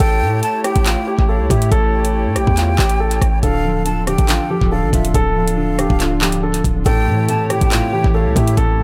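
Drill hip hop at 140 BPM in a half-time feel and D harmonic minor, this tense, dark excerpt sets a shadowy concert grand piano melody with tape echo against a breathy, trembling silver flute line, also echoed, over a hollow, chorused pad, a knocking drill kit with metallic hats and claps up front, and a punchy, heavy, decaying 808 bass, while a felt-muted upright piano with a vintage, intimate tone joins at 3.4 s as the chords move from A7 to Dm and back, all held in a small, echo-heavy room.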